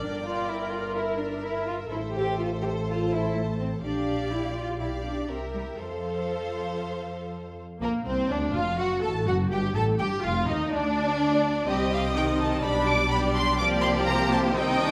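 A spirited, lively classical-period string orchestra movement in F major at a quick 125 BPM, where a lush, softly attacked first violin melody rides over a clear, focused second violin line, rich viola accompaniment, dark, intimate cellos and a smooth, even double bass section, all bowed with vibrato in a recital-hall reverb, as the harmony moves from Gm through a cadence on F at 5.8 seconds into a second section that ends on Cm.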